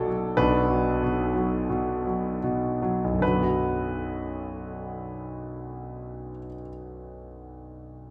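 Classical solo piano in B minor, this brief excerpt cut from a longer piece unfolds in a wistful, melancholic mood at a slow, rubato pace of around 36-51 BPM, easing down through its opening 3.2 seconds before moving into a new section. A concert grand carries the music alone, its intimate, natural tone sitting up front with deep bass reaching down to B1 and audible action noise from the instrument. The sound is set in a moderate recital hall reverb that gives the phrases a gentle sense of space.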